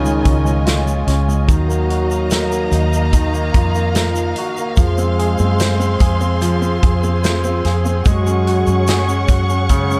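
Pop ballad at 73 BPM in 4/4 with an emotional, hopeful mood, where a round, foam-muted vintage fingered electric bass and an up-front country drum kit of punchy kick, medium-tuned snare and hi-hat support a clear, polished baby grand piano, while a lush, bowed string section holds dark sustained chords with expressive vibrato, a mellow French horn section with soft attack adds a second line, and a grainy tube shaker sits close in the mix, all over chords moving from Dbadd9 through Ebmadd9 and Fm to Gbsus2 in a dry, dark production cut from a longer piece.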